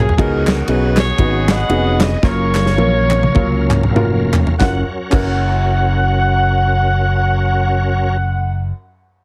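A mellow saxophone section carries the melody of this jubilant, soulful, swung uptempo gospel cut over warm baby grand piano, a shouting tonewheel organ with key click, slow rotary speaker and chorus vibrato, a growly, punchy fingered bass and a drum fill from a punchy acoustic kit, with crisp group handclaps joining at 0.5 seconds, the groove slowing before settling on a plain major chord at 4.6 seconds, and drums and claps dropping out at 5.3 seconds, all in a small room with heavily compressed radio sound.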